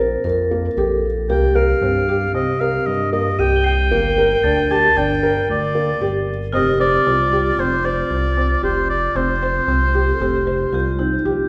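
Restless and shimmering, this fragment of contemporary chamber music moves at 114 BPM in an uneven 5/4 with a straight feel. A felt-muted upright piano spins intimate arpeggios with audible action noise, and a vibraphone played with soft mallets, motor off, rings out a metallic second line. Underneath, a smooth synth bass, detuned with sawtooth and square-wave tones and vibrato, sits up front. At 1.3 s a warm oboe takes the solo melody in a classical style with light vibrato. From 1.6 s crotales struck with hard rubber mallets add a high, bell-like sparkle in the background, while the harmony drifts from Bbsus2 through Cm7 and Gm to Fsus2. A wet recital hall reverb, lasting about 1.9 s, gives the ensemble the resonance of a church or concert hall before the passage breaks off.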